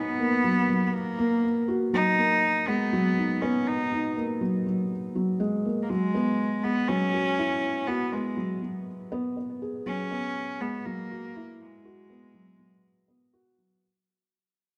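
A rich, reedy bowed cello melody and a soft, felt-muted upright piano riff with a dark, boxy tone open this intimate, cinematic electronica excerpt together at 121 BPM, both up front in a wet echo chamber, moving from G#m9 to Eadd9 at 5.9 seconds as the recording fades out through 13.8 seconds.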